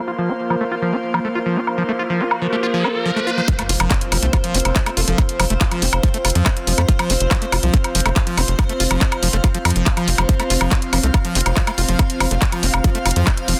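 A squelchy, resonant acid bass riff drives this alien psychedelic trance cut at 141 BPM, its filter sweeping over an evolving wavetable pad, an airy, breathy pad and a tape-warm garage kit of handclaps, hi-hat and woodblock, all three melodic layers pumping against the sidechain. A background riser builds from 1.7 seconds into a drop with an impact at 3.5 seconds, where an up-front electronic kick enters, followed moments later by a tight, punchy sequencer bass that anchors the low end. A very quiet formant-sweep wobble bass adds a saturated second line in two short passages, all set in light digital ambience under a dense, heavily limited modern master.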